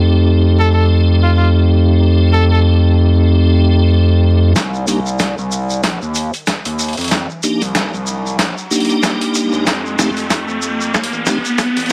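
Glitch hop at 94 BPM in C dorian, gritty and playful, where a distorted, resonant synth bass and piping tonewheel organ stabs with key click, slow rotary and dub echo open under a brief bright, punchy trumpet phrase, before a compressed, pitched-down boom bap kit with a thumpy background kick, grainy shekere and an electronic riser from 6.4 s build through a drum fill over vinyl crackle, moving from F7 to Cm7 at 4.6 s and back to F7, in what is cut from a longer piece.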